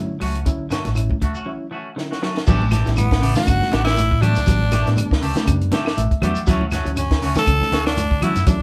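A raspy, gritty tenor saxophone takes the lead from 3.0 seconds, sitting up front with vibrato and scooped notes over a driving, joyful afrobeat groove at 120 BPM in A mixolydian, with a light swing on the sixteenths. Beneath it, a fingered electric bass gives a dark, round, amped foundation, while a compact cocktail drum kit, also up front, plays crash, hi-hat, kick and snare with a high-tuned snare and a tight kick. Thick-skinned congas, woody claves and a grainy shekere sit in the background, along with picked arpeggios from a hollow-body semi-hollow guitar and a reedy electric piano with fast tremolo that adds a fill around 5.7 seconds, while a clean electric guitar contributes twangy stabs. The opening passage over Dmaj7 closes with a break and a drum fill, and at 2.5 seconds the harmony moves to A7sus4 before returning to Dmaj7. The band sounds as though it is playing live together in a small room with moderate reverb, and the clip is cut from a longer piece.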